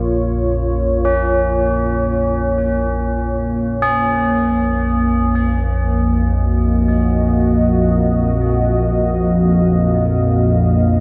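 A low analog drone with a warm, evolving sawtooth and pulse-width-modulated tone sits up front beside a deep, detuned pad with a sub octave and chorus, while a bronze singing bowl rings very quietly, bright and airy with slow beating, in this unsettling, ominous dark ambient fragment in free time. Close-miked tubular bells enter at 1.1 seconds with solemn, metallic arpeggios trailed by delay, as the harmony shifts from Bbm to Ebmadd9 at 4.2 seconds. A huge, wet reverb with a long tail wraps the whole texture, cut from a longer piece.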